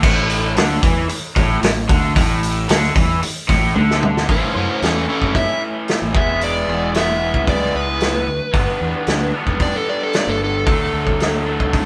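A straight 4/4 groove at 113 BPM drives this swaggering blues rock and southern rock excerpt in A mixolydian, with a vintage drum kit of punchy kick, medium-tuned snare, dark cymbals and toms sitting up front beside a raw, bright, double-tracked garage guitar riff and a growly fuzz bass. A drum fill at 3.8 s leads into the second section, where a dark, overdriven slide guitar enters at 4.3 s carrying the melody with slapback echo over chords moving from A to E, G and D. The drums sound gritty and the garage guitar lo-fi, with the band playing live together in one room with moderate studio reverb.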